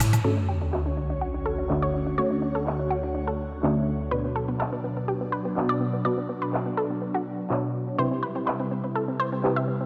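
Detuned supersaw stabs with lush chorus and delay drive this expansive, hopeful progressive house excerpt from 0.2 seconds, riding over a breathy, phased pad that holds sustained chords through Dmaj7, Bm and Cmaj7. A nasal, wave-folded analog pluck plays arpeggios with chorus and delay under a filter sweep, while a layered electronic pop drum kit with metallic hats, handclaps, shaker, toms and woodblock opens on a fill. A sub drop impact runs from 0.2 to 2.2 seconds, and a lush hall reverb wraps the mix.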